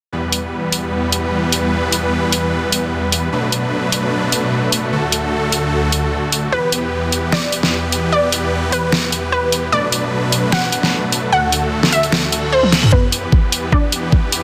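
Heavy and aggressive, this cut from a longer heavy wobble dubstep piece moves at 150 BPM in 4/4 with a half-time feel and a light swing on the sixteenths, sitting in E minor over an Em, Bm7, D progression. Huge, detuned supersaw chords hold sustained harmonies from the opening, their bright, up-front sawtooth stack pumping against the sidechain. The dubstep drum kit arrives almost at once, overdriven and up front, with a deep snare, bright hi-hats and toms. At 6.5 s a punchy unison pluck takes up the melody, its lush, decaying notes trailing into dub echo. A reverse cymbal and riser hover in the background from 12.4 s, a drum fill lands at 12.6 s, and at 12.9 s a knocking, overdriven electronic kick joins as the build-up begins. A moderate digital hall reverb surrounds the parts, and the master is dense and heavily limited.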